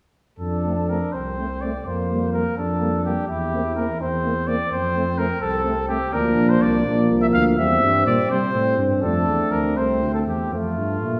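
A trumpet sits up front with the melody, its tone warm and smooth on top with light vibrato, in a triumphant, stately classical brass quintet in F major, moving in a rubato 6/8 at about 83 BPM by the dotted quarter. A softly attacked, mellow flugelhorn carries the second line and a smooth bass trombone anchors the low end up front, all three entering at 0.4 seconds. The French horn and a gently vibrato-touched trombone join just after in the background as accompaniment, the whole cut from a longer piece and bathed in the wet reverb of a scoring stage.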